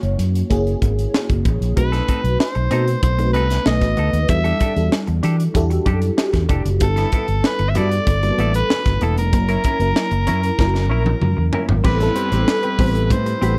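Polished 1980s jazz-funk pop with a glossy, urban mood, moving at 95 BPM in a straight 4/4 and cut from a longer piece. From the start, a lush, dreamy FM electric piano with a soft pad layer spreads chords through phaser and ensemble chorus, over a punchy, amped fingered electric bass and a crisp, saturated fusion drum kit whose high-tuned snare, punchy kick and pumping small-room sound sit up front. At 1.8 seconds a raspy soprano saxophone takes the melody with light vibrato, scooped notes and a slapback echo, joined by a clean, compressed semi-hollow electric guitar riff carrying a subtle chorus. The harmony moves from F#7 through B7b9, Em11 and G69 before a drum fill leads into a new section at 11.8 seconds on Am9. There a distant, roomy horn section adds a soft second line in the background, all set in a studio reverb.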